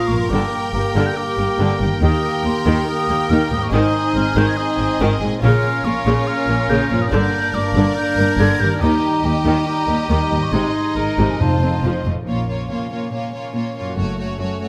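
Opening at once on a full orchestra, this swashbuckling, adventurous heroic film-score fragment sets a rich violin section's smooth melody above a bright second violin line, an airy, hollow flute, a mellow oboe and a dark, distant clarinet, with a warm viola section, roomy French horn chords, very quiet ringing harp arpeggios, and cellos and double basses beneath, while round, soft-mallet timpani strike briefly at 11.4 seconds before the woodwinds fall away near 12 seconds, in a moderate recital-hall reverb.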